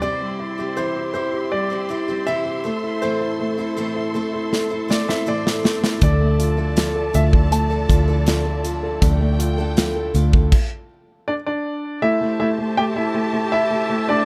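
A straight 4/4 pulse carries this heartbroken pop ballad fragment, where a clear, up-front grand piano with audible action noise and a touch of delay sings the melody over a mellow felt-muted upright piano, lush bowed strings with vibrato and portamento, and bright picked steel-string acoustic guitar arpeggios complete with finger squeak. A drum fill brings in a punchy, polished acoustic kit at 4.5 seconds, and a round, foam-muted electric bass joins at 6.0 seconds, both sitting up front. The guitar, bass and drums stop around 10.5 seconds, leaving the two pianos and strings to carry the emotional close in a small room with a dark production.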